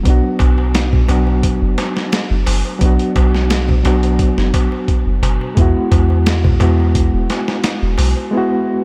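A light reverb frames this hypnotic, cinematic trip hop excerpt, cut from a longer piece and moving at 87 BPM in 4/4 with a slight swing on the sixteenths, in B dorian tuned to A4 = 445 Hz. Up front, a reedy, clean electric piano carries the accompaniment from 0.0 s, its fast tremolo and harmonic tremolo shimmering through a tape echo as the chords move from Bm to Eadd9 at 5.6 s. Beneath it, a soft 808-style bass sits deep and round, a dark sine tone with a fast attack that decays. The boom bap sampler-style drum kit is gritty and compressed, pitched down and re-recorded in a small room, with a thumpy kick, a medium-tuned snare and hi-hat, the whole kit tape-warm and up front. A crisp metal-shell darbuka, played with hard hands, sounds distant in a large room, adding a faint acoustic layer until about 8.3 s.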